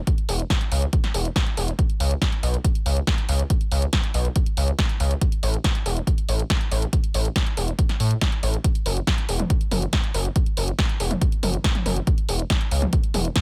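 A gritty, distorted synth bass sits up front in this bittersweet, emotional uplifting trance passage, spanning E1 to A2 with a nasal, aggressive sawtooth bite, touches of oscillator sync and sine tone, and a filter sweep. Its notes have a fast attack and then decay, and sidechain pumping gives the bass a breathing push against the beat. Beneath it, an electronic kick drum drives a straight 4/4 at 140 BPM, its punchy analog thump carrying a tape-saturated glow and the character of a small room. A punchy analog drum machine adds hi-hat, snare and toms with the same tape-warm, small-room flavour, with sidechain pumping on the hats and toms. The sound is dry, with little reverb, and the section runs 13.4 seconds, cut from a longer piece.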